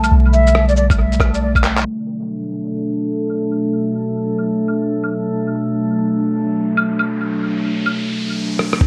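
Through vinyl crackle, a low-pass filter and a moderate chamber echo, this wistful, ghostly future garage excerpt rests on a warbling, detuned tape-like pad pumping against a round, deep 808-style bass, with swung shaker, claves, cabasa, rim click and handclaps fed through analog delay, a muffled, thumpy kick, a brief airy wooden flute phrase with vibrato and tape echo at 0.3 seconds, a glassy texture of drifting overtones entering at 2.3 seconds, and a faint electronic riser from 6.4 seconds under a long filter sweep.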